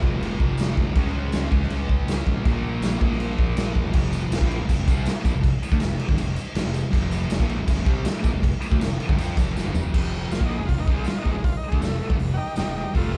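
A double-tracked, thick fuzz guitar riff opens this rowdy, swaggering 160 BPM garage rock excerpt alongside an up-front, gritty drum kit with a punchy kick and rolled-off top and an overdriven fuzz bass sitting in the background, joined at 0.6 seconds by a jingly tambourine low in the mix, before a drum fill at 9.6 seconds leads into a buzzy, overdriven combo organ solo with heavy vibrato entering at 10.3 seconds, all captured as a band playing live in one room with light reverb.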